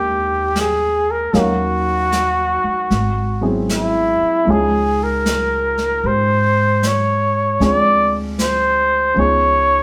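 A wet, live-in-one-room sound frames this wistful, smoky jazz ballad fragment, where an up-front flugelhorn with vibrato and a smooth top sings the melody over an intimate baby grand piano with audible action noise, a woody, growly pizzicato upright bass, and a natural brushed drum kit that enters at 0.6 seconds as rich chords like Abmaj9 and Ab7alt drift past.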